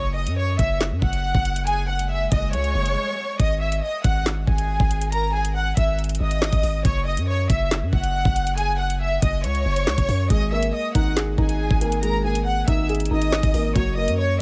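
Dark and tense, this half-time drill excerpt at 139 BPM sets a lush, vibrato-rich violin section up front over a deep, sine-like 808 bass that sustains long and decays, while an overdriven electronic kit of knocking kick, woody snare, bright hats, handclaps and rim clicks drives from 0.3 seconds. A background electronic swell leads into a brief break at 3.0 seconds before the main section begins. At 10.3 seconds a soft, felt-muted upright piano with a vintage, intimate tone joins as accompaniment, all in a dry, close mix.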